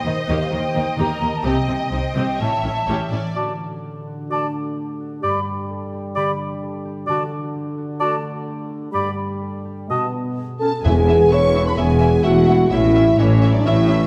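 Cinematic heroic adventure score in an adventurous, soaring mood, where airy flutes and ringing harp arpeggios run throughout, lush bowed strings with vibrato carry the melody and a woody bass before dropping out at 3.2 seconds, and a close, up-front oboe, a punchy clarinet and mellow, roomy French horns take over until the strings return at 10.8 seconds, joined by a mellow tuba, a very quiet clear trombone section and soft, round timpani, all in a wet scoring-stage reverb.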